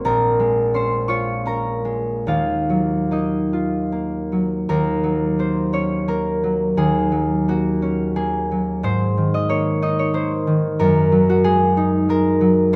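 A bright, ringing concert harp opens on a Bbm7 chord, fingerpicked and up front, in this wistful, gentle solo classical piece in Eb dorian, moving in a rubato 3/4 at roughly 70-94 BPM. Spanning Bb1 to Db6, the harp passes through Ebmadd9 and Ebm7 before settling onto Abadd9 at 8.8 s and a closing Gb69 at 10.8 s, with the opening phrase restated from 4.7 s. Moderate reverb from a large studio surrounds the acoustic harp in this short section cut from a longer piece.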